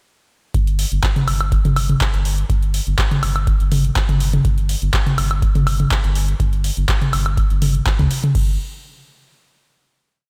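At 0.5 s, a deep four-on-the-floor electronic kick, a booming analog drum machine and a round, dark analog bass all start together in a raw, playful acid house groove at 123 BPM in 4/4. The up-front drum machine sets metallic hi-hats, handclaps, toms, woodblock and crash cymbal over the tape-warm kick, while the wave-folded bass plays a dotted rhythm with tube saturation and sidechain pumping. The dry mix holds this groove until 8.3 s, when a final note sounds through to 10.3 s.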